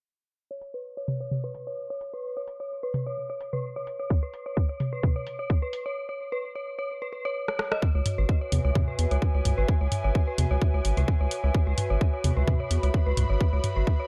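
Minimal techno with a quirky, clinical mood, cut from a longer piece, built on an eerie, inharmonic synth bell riff that wavers through chorus, tremolo, digital delay and sidechain pumping under a filter sweep, set over bright garage hi-hat and rim clicks and overdriven electronic toms, with a tight, up-front kick arriving at 4.1 seconds and a break and drum fill leading to 7.8 seconds, where a round, deep analog bass and an airy, breathy pad, both pumping with sidechain compression, enter in a dark ambience.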